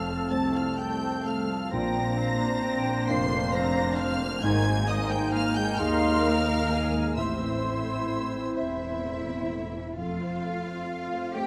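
A moderate scoring-stage reverb gives this hopeful, tender cinematic excerpt in F major an open, lush glow, moving in a rubato 6/8 at about 43 BPM. Violins with vibrato carry the high, smooth melody, while a second violin line, an airy, bright flute ensemble, a distant, mellow cor anglais and a very quiet solo clarinet weave supporting lines; the cor anglais and clarinet drop out near 9.7 s and 9.6 s. Underneath, a dark piano and focused violas sit in the background, a French horn section holds clear sustained chords, and expressive cellos with rich double basses anchor the bass as the harmony shifts from F through Bbadd9, Absus2 and A minor before returning to F at 10.0 s.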